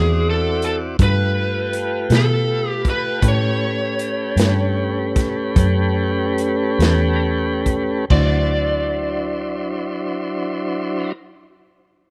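An overdriven lead guitar, a tonewheel organ and a muted electric bass open this soulful, gritty slow blues together, set in a 12/8 feel at around 45-54 BPM. The guitar carries the melody with a picked, cranked-amp bite, while the organ holds smooth, clean sustained chords up front, its slow rotary speaker adding a gentle vibrato. The vintage fingered bass sits low with a dark, round, foam-muted tone, and a crunchy breakbeat kit enters at 0.6 seconds, its saturated sound marked by dark cymbals, a medium-tuned snare, a tight kick and a rolled-off top. The harmony moves from D9 to G9 and A9 before returning to D9, and the tempo slows from 1.7 to 8.1 seconds, with the drums dropping out at 8.3 seconds. The dry, rough home-demo mix gives this fragment of a longer piece an intimate, small-room character.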